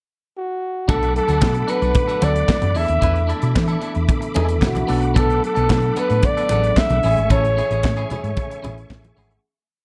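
A mellow, softly scooped flugelhorn opens with a brief pickup before a sultry, glamorous disco groove at 112 BPM in B dorian falls in at 0.9 seconds, with a tight funk kit's four-on-the-floor beat and clap-layered snare, a round, punchy hollow-body bass line full of slides, choppy twangy sixteenth-note guitar, pushed electric piano chords through a phaser, a lightly overdriven organ pad on fast rotary, and ringing low congas in the background, all moving through Bm7, E7sus4 and Amaj7 in a dark production until a fade-out from 7.3 seconds and a closing electric piano fill.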